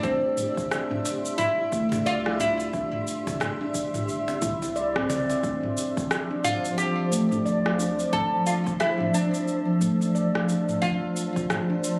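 An up-front, woody oud leads this earthy, hypnotic organic downtempo piece at 89 BPM in D minor, its plectrum-plucked double strings carrying a fretless melody with a touch of delay. A blurred, evolving granular cloud pad holds sustained chords from the start, its detuned unison tone gently pumping, while a mellow, close-miked handpan rings out soft fingertip arpeggios, also with delay. Underneath, a round sine sub bass sits in the background with the same pumping, and a tape-toned afro-pop kit of rim clicks, shaker and toms plays alongside a deep electronic kick, both re-recorded in a small room, over a swung 16th-note feel. A snappy cajon with snares enters quietly at 0.7 seconds and plays until 5.4 seconds, just after the whole band hits an accent at 4.9 seconds. The harmony moves from C to Dm7 at 5.4 seconds and then to F, and the mix has the roomy echo-chamber reverb and compressed, phone-captured club character of a cut from a longer piece.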